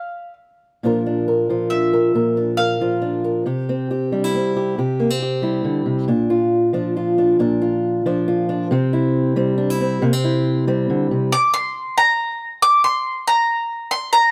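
A woody, double-strung mandolin picks the opening melody and returns at 11.3 seconds, framing a fingerpicked acoustic archtop guitar with audible finger squeak that carries the accompaniment alone in between, in an anthemic, nostalgic folk piece in three that builds from 6.1 seconds, with both instruments up front in light reverb in this passage cut from a longer work.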